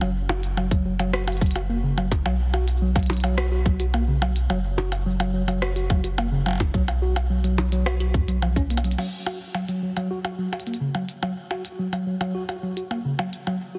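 Squashed into a heavily compressed, radio-like sound with a light touch of reverb, this wistful, intricate IDM fragment is cut from a longer piece. A mellow tine electric piano spins arpeggios through a low-pass filter and tape echo, resting on a round, deep sine sub bass that drops out at 9.0 s, while a glitchy, overdriven kit of clicky hats, rim clicks, shaker, crash and percussion blips ticks beside a tight, up-front electronic kick that runs from 0.7 s until a drum fill at 8.7 s. The closing stretch turns the focus to the clean-toned electric piano, heard as if through built-in speakers, as a filter sweep moves over it and the glitchy kit keeps ticking beneath.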